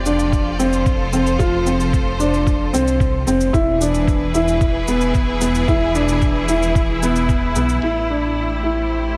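A woody, boxy upright piano sits up front, repeating a mellow riff through a digital delay in this hypnotic, melancholic stretch of piano-and-strings electronica. Beneath it, a bowed studio string section holds lush, vibrato-rich sustained chords that pump against the beat, while a deep, detuned sawtooth bass rumbles and beats in the low end with the same sidechain pulse. A muffled, thumpy, pitched-down kick drives the straight groove, joined by a tape-warm electronic shaker and crash cymbal that sound re-recorded in a small room and softened by low-pass filtering. The harmony moves from F to E, then settles on A minor seven at 7.8 seconds; the kick has already dropped out at 7.4 seconds, and the shaker and cymbal fall away by 7.9 seconds. Light digital ambience places the cut-down passage in a soft reverberant space.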